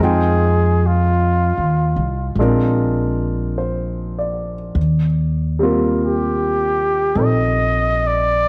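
Wistful and intimate, this jazz ballad moves at an unhurried pace with a gentle swing in 4/4, heard as a brief cut from a longer piece. A dark, close-miked trumpet carries the melody as the soloist, singing with vibrato and scooped notes in a jazz style. A baby grand piano supplies the accompaniment with a natural, short-sustained tone, while an upright bass, played pizzicato on steel strings, gives a woody, acoustic foundation. All three parts sit up front and play together throughout the 8.5 seconds, moving through Fm7, Bb7 and Ebmaj13. A moderate echo chamber reverb lends the whole a sense of space.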